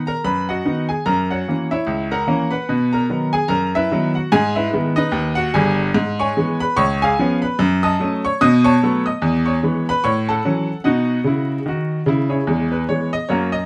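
A bright upright piano carries this short stride jazz excerpt alone, its brilliant, woody tone sitting up front and intimate, with audible action noise in the keys and a range stretching from G1 to D#6. The playful, exuberant piece swings at 147 BPM in 4/4, starting in B major and moving to E major from 6.0 s, with the harmony passing through chords such as G#m, C#7, F#m and A6. A moderate studio reverb and a layer of vinyl crackle frame the sound, and a new section begins at 12.5 s before the clip ends at 13.7 s.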